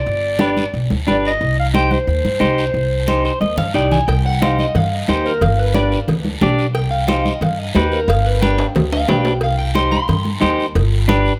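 Driving and fiery, this cumbia excerpt moves at 180 BPM in C harmonic minor, opening with a mellow clarinet solo full of vibrato and scooped notes over woody pizzicato upright bass, bright hard-hand congas, a raspy guiro and an up-front clean electric guitar. A drum fill and a guitar fill lead into the second section at 4.1 seconds, where ringing cowbell and timbales join and a dark, slightly broken-up electric guitar with spring reverb takes the melody, while the clean guitar launches into a solo as the chords alternate between G and Cm. The sound is close and detailed, with light reverb.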